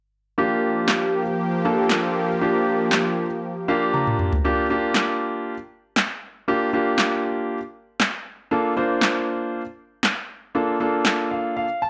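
Euphoric and carefree, this short dance-pop passage moves at 118 BPM in a straight 4/4, tuned slightly below standard pitch. A clear concert grand piano carries the accompaniment from 0.4 seconds, intimate and polished, with audible action noise, deep bass and long sustain, ringing from Bb3 to Bb5 over a move from Gm7 to Bbmaj7 at 8.5 seconds. A soft, smooth supersaw, detuned in unison with a gentle attack, holds sustained chords alongside it until 4.4 seconds. The electronic deep house drum kit arrives at 0.9 seconds, layered and up front, with handclaps, toms and a punchy snare that sounds re-recorded in a small room. The piano adds fills at the close of each section, joined by a drum fill before the second section begins, all set in light digital ambience with a dry, gritty hardware character.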